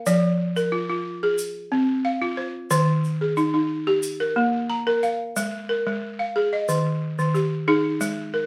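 West African traditional string and xylophone music at 91 BPM with a hypnotic, flowing mood, where a woody, buzzing balafon struck with hard rubber mallets sits up front spinning arpeggios from Eb3 to Bb5 over chords moving from Fm to Eb, while a grainy, bright tube shaker adds acoustic percussion in a live-sounding room, all heard from further back in a reverberant studio space in this short cut from a longer piece.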